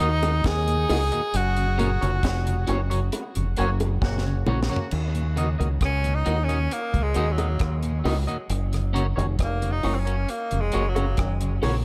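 A round, dark fingered electric bass sits up front in this sunny, uplifting roots reggae excerpt at 67 BPM, carrying a D#m to F# progression beneath a breathy, whispered tenor saxophone that takes a solo from 4.9 seconds, its intimate vibrato trailed by tape echo. Twangy clean electric guitar, a very quiet hollow-body guitar playing arpeggios and a mellow tonewheel organ with chorus vibrato, slow rotary speaker and dub echo fill in the accompaniment, while a dry kit with a high-tuned snare, tight kick and dark cymbals adds dub echo and a drum fill from 4.0 seconds. Distant, high-tuned bongos sit in the background, a smooth horn section briefly adds a second line at 3.6 seconds, and the mix is echo-heavy with little reverb.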